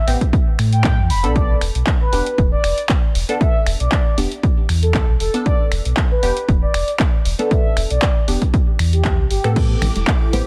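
Deep house at 117 BPM with a smooth, late-night mood, this short excerpt pairs a round, horn-like synth lead with vibrato against muted, detuned dub chord stabs drenched in phaser and analog delay, over a deep sine sub bass and a punchy, tape-warm kick up front with analog drum-machine hi-hats, snaps, claps and crash. In the final second, shimmering vintage string-machine violins slip in softly in the background around 9.6 seconds, followed by bright, damped congas near 9.8 seconds and a blurred granular cloud pad near 9.9 seconds.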